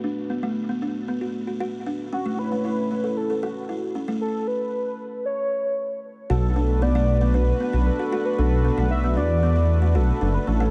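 A chorused analog pad holds sustained chords under a filter sweep while a buzzing, woody kalimba plays arpeggios through 12-bit sampler grit, a low-pass filter and dub echo in this eerie, glitchy IDM excerpt at 115 BPM in B minor. At 2.1 seconds a velvety synth lead with vibrato takes up the melody through chorus and delay, moving over Bm7 and A chords. At 6.3 seconds a dark, detuned sawtooth bass enters up front with a deep, rumbling, beating tone, all set in light reverb.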